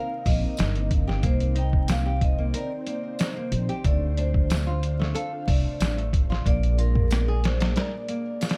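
A pitched-down, muffled sampler-style drum kit with a thumpy kick and medium-tuned snare sets a straight 92 BPM trip hop groove at 0.3 seconds, joined by a woody pizzicato upright bass with tube saturation, both up front, and a soft-handed, ringing tambourine tucked in the background from 0.6 seconds. Over this smoky, hypnotic C minor passage, moving through Cm7, Dm7 and Bb7, a metallic vibraphone carries the melody through tape echo, while a fingerpicked nylon-string guitar plays deep classical arpeggios with delay. A dark, sawtooth string machine cello patch holds soft-attack chords with ensemble chorus and vintage 12-bit grit, all set in studio reverb under vinyl crackle in this fragment of a longer piece, and the bass drops out at 7.7 seconds.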